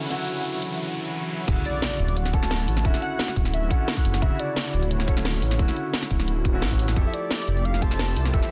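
Liquid drum and bass with a warm, uplifting mood, this short excerpt opens on a brief build-up where a clear grand piano with tape echo and a lush, airy unison pad pulsing with sidechain pumping hold a Dmaj9 chord under an electronic riser. At 1.5 seconds the drop lands with an impact, bringing in a tight, tape-warm electronic kick and an up-front, saturated detuned saw bass whose filter swell gives it a menacing, evolving edge. The garage drum kit, present almost from the start, drives the groove with a cracking snare, hi-hat, tambourine and crash cymbal. A velvety, mellow synth lead with vibrato, chorus and dub echo carries the melody high above from 1.7 seconds, while the pad sits thick in the background with chorus and phaser. The harmony shifts to Fmaj9 at 7.0 seconds, all within a light reverb and a dense, heavily limited modern master.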